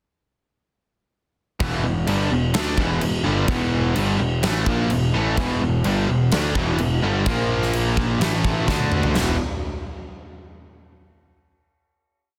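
Anthemic and swaggering, this short, complete hard rock piece drives along at 127 BPM in a straight 4/4. Three overdriven guitars play a power-chord riff from 1.6 seconds, a bright cranked stack guitar and a bright, double-tracked distorted guitar sitting in the background while a crunchy, warm guitar stays very quiet beneath them. Up front, a dark, round fuzz bass drives eighth notes and doubles the guitar riff, with a punchy, amped growl. The big acoustic drum kit, also up front, brings a fat snare, a punchy kick with soft clipping, crash and splash cymbals and toms in a half-time groove, set in a bright stone room. The riff moves from E5 through A#5, A5 and D5, a drum fill at 8.7 seconds leads into a final E5 chord at 9.2 seconds, and the dense, heavily limited master carries little reverb.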